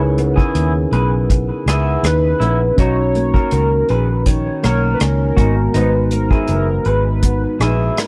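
A straight 4/4 groove at 81 BPM starts at 0.2 s, with an unplugged kit played with bundle sticks giving an airy hi-hat, rim clicks and a punchy kick, while a dark, round, foam-muted electric bass sits up front. In this lonely, hazy indie and bedroom pop excerpt in C# dorian, a thumb-plucked flamenco guitar with analog chorus and a warbly pitch drift plays from the start alongside a mellow tine electric piano colored by cassette tape over C#m9, Bmaj9 and G#m9. A slightly broken-up, lo-fi electric guitar adds a second line through lush chorus and tape echo from 0.4 s, and a velvety sawtooth synth lead with vibrato carries the melody from 2.1 s, all captured in a dry, close 1970s-style small room.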